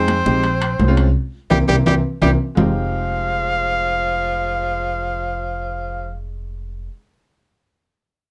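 Afro-Cuban jazz with a fiery, sultry mood, this short cut from a longer piece moves in a straight four over a Bbm7 to C7 progression. A breathy trumpet with vibrato carries the melody up front, while an edgy, forceful tenor saxophone plays a second line beneath it, and both horns stop at 6.2 seconds. A clear upright piano with an open, woody tone supplies accompaniment, and a dark pizzicato upright bass with steel strings sits up front. Bright, high-tuned congas played with soft hands sound close and dry, joined by ringing metal-shell timbales that are compressed and saturated in the background, and the percussion drops out at 2.7 seconds. Before the move to Fm7 the band hits an accent, with a drum fill and a piano fill, all captured with close, detailed microphones and light reverb.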